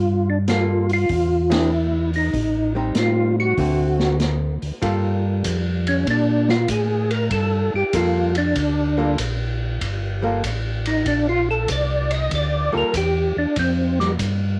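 A late-night, soulful soul jazz organ trio groove in G minor opens with two tonewheel organs together. One is a percussive, round organ carrying the melody through a slow rotary speaker, chorus vibrato and plate reverb, and the other is a mellow, up-front organ bass with audible key click and transformer saturation. At 0.5 seconds a clean, picked hollow-body archtop guitar joins in accompaniment, compressed and dark with its own plate reverb. It arrives alongside a vintage acoustic drum kit with a punchy kick, medium-tuned snare, hi-hat and dusky ride cymbal in a pumping room. The tempo sits at 96 BPM in 4/4 with a swung eighth-note feel, and the band hits an accent together early on as the chords move from Gm9 through E7b13, Am7b5 and D7 back to Gm9. From 4.8 seconds the melody organ stretches out into a solo, heard in a modest small-room ambience on a home cassette recording, with tape coloring the melody organ and drums, in a passage cut from a longer piece.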